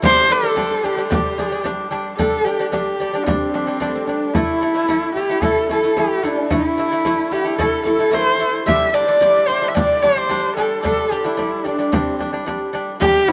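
A straight 4/4 pulse from a deep, close and dry frame drum carries this proud, vast Mongolian folk excerpt, where a husky, boxy horsehead fiddle sings the up-front bowed melody with vibrato and portamento, a mellow, delicate fingerpicked lute on doubled gut strings plays arpeggios just as near, and a silvery, ringing guzheng adds a second line from the background inside a huge ambient reverb.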